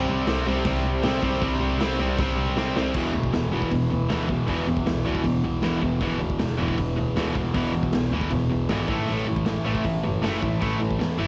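A straight 4/4 pulse drives at 157 BPM in this rebellious, upbeat punk rock fragment cut from a longer piece. Three picked, overdriven electric guitars share the riff over power chords that move from C5 to E5 and later to A5: a double-tracked, sludgy one sits up front, a bright one cuts alongside it, and a biting one stays in the background. Underneath, a bowed double bass holds a smooth, even line with vibrato from a single player. The acoustic garage kit enters at 0.3 seconds with punchy kick, medium-tuned snare, hi-hat and crash, its cassette-tape saturation giving it a gritty, dark tone with a rolled-off top despite the stone room around it. A short drum fill at 2.6 seconds sets up the longer second section from 2.9 seconds, and the whole home cassette recording stays dry, with little reverb.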